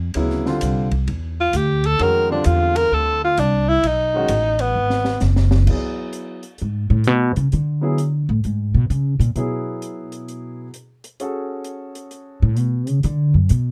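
A swinging four-beat pulse with a lilting eighth-note feel carries this short modal jazz passage, which has an open, searching mood and is cut from a longer piece. A breathy tenor saxophone leads with a clear, up-front solo from 1.4 seconds, its subtone colored by vibrato and scooped notes in a classic jazz style. The acoustic drum kit sounds as if in a small room, with dark cymbals, a high-tuned snare and a boomy kick, and it plays a fill at 4.8 seconds. At 5.7 seconds the pizzicato upright bass takes over with a solo, its woody, growly steel-string tone placed up front. For most of the passage, a warm baby grand piano provides natural-sounding accompaniment with long sustain. The overall sound is dry, with very little reverb.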